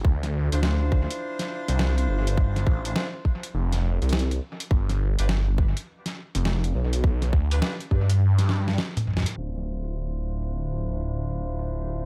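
Drenched in echo and darkened by a low-pass filter, this playful, swaggering glitch hop clip in D dorian struts at 103 BPM with a swung 16th-note feel, moving from Dm9 to G7 and back. An up-front, swirling detuned saw bass with phaser and overdrive anchors the low end. A tight, layered electronic kick runs until 8.1 seconds, while a gritty, pitched-down boom bap kit of hi-hat, snare and toms, soaked in dub echo, plays throughout. A warm horn section adds vibrato-tinged stabs that pump under sidechain. A drum fill and band accent lead into a closing section at 9.4 seconds, where a filter sweep carries the piece to its cut-off point.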